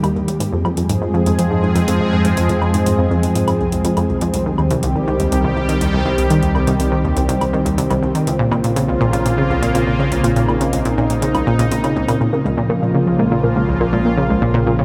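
A bright, up-front resonant pad and a detuned sawtooth analog pluck open this mysterious, expansive piece of ambient, sequencer-driven space music at 122 BPM in a straight 4/4. Under them sit a round, deep analog bass in the background and an electronic hi-hat and woodblock pattern with metallic hats and delay. The pad holds full-bodied, evolving sustained chords with a slow filter swell, chorus and shimmer reverb, while the pluck repeats a riff with chorus, delay and shimmer. A filter sweep runs on a synth sound through the opening section, over chords moving from Fm to Cm to Bbmadd9 in Bb dorian. At 12.2 seconds the percussion stops and the harmony settles on Bbm, as a mellow, warbling, lo-fi pluck adds arpeggios in the background and a pulsing, tempo-synced gated texture hovers barely audible beneath. The whole excerpt sits in a wet, huge ambient reverb, and it is cut from a longer piece.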